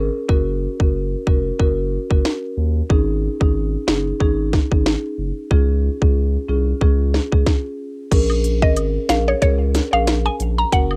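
Tough and bouncy, this excerpt of dancehall in Bb minor moves at 92 BPM with a swung sixteenth feel. A woody, vintage, band-limited marimba with rosewood bars carries the chords over a deep, thick saturated sub bass, while an overdriven, up-front electronic kit with a tight kick, sharp snare and smooth hats drives the groove before a brief stop at 7.5 seconds. After the break, dry woodblock and cabasa enter in the background at 8.3 seconds, and at 8.6 seconds a round, percussive FM synth pluck takes the melody with chorus and plate reverb, all captured in a home cassette recording with light reverb.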